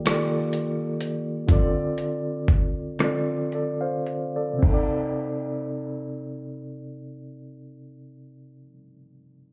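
A slow six-eight R&B groove at 35-43 BPM in dotted quarters, late-night and yearning in C dorian, is set by a dusty, gritty sampler-style drum kit of thumpy kick, rim click, hi-hat and crash cymbal, overdriven, compressed and up front, that plays from 0.1 to 4.9 s while the tempo slows and a filter sweep runs, under a reedy, clean electric piano with fast tremolo and slapback echo that carries chords from Ebmaj9#11 through Dm7 to Cm69 until 9.5 s, the whole cut from a longer piece and heard as a live gig through the venue's PA with club reverb, light reverb and a low-pass filter.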